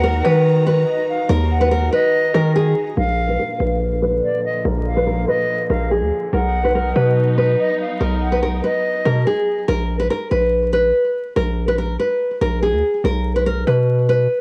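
Hip hop in a brooding, hard-hitting half-time feel at 143 BPM, where an up-front, fingerpicked classical nylon-string guitar carries the melody through lo-fi cassette haze and tape echo over a heavy, aggressive distorted 808-style bass, while an airy, expressive concert flute plays a distant second line and a lush bowed studio string section holds chords moving from Ebm through Bb to B under a filter sweep from 3.0 to 9.7 s, after which the guitar and bass continue over vinyl crackle and light reverb.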